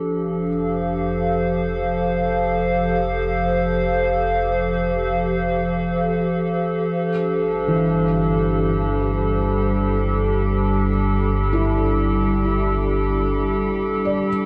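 This weightless, luminous ambient passage in free time, cut from a longer piece, begins with a warbling, nostalgic tape-like pad holding chords up front with chorus and built-in reverb, as a round, dark analog bass and a soft, felt-muted upright piano both fade in, the piano's delayed arpeggios sitting in the background before dropping out at 0.9 seconds and returning at 7.7 seconds, shortly before a calm, organ-like drone with ensemble chorus settles in at 7.9 seconds, the whole placed in a vast, echoing space with cassette-tape grain.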